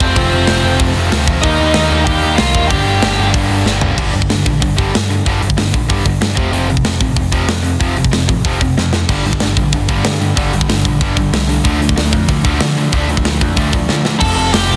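Urgent and aggressive, this punk rock cut charges ahead in a straight 4/4, its dense, heavily limited master packed tight with little reverb. A tight metal drum kit sits up front, its bright cymbals, medium-tuned snare and tight kick driving nearly the whole way, with short fills marking each change, including one at 3.7 seconds. Beneath it, an overdriven picked bass sounds dark, round and punchy, while three distorted guitars stack up riffs: a bright, picked guitar running through most of the cut, a second bright distorted guitar set in the background, and a double-tracked fuzz guitar with a warm edge that drops out after 4.0 seconds and returns at 9.1. A dark, nasal lead guitar with a parked wah, overdrive and delay carries the melody over the opening chords, then reappears briefly at 14.2 seconds as the music returns to F. The harmony moves from full chords in the opening bars to blunt power chords once the riffing takes over, with a turn to D minor before the close.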